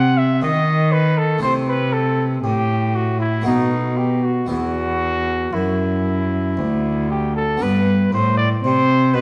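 A short excerpt from a grave, solemn baroque-style sonata movement in E minor opens with trumpet, harpsichord and cello sounding together from the first moment, moving in a slow 3/4 at 59 BPM. The mellow, vintage-toned trumpet carries the solo melody up front, while a bowed cello with a rich, reedy gut-string tone and light vibrato holds the bass line in period style as the most prominent voice. A close-miked harpsichord, dry yet brilliant with its three sets of plucked strings, fills in the continuo accompaniment in an Italian manner. The harmony passes from B through Am/C and B7 to a bare E5, then reaches G as the opening material returns at 7.6 seconds. A scoring-stage reverb lends the dark, warm production a spacious tail, with a faint mains hum audible beneath the music.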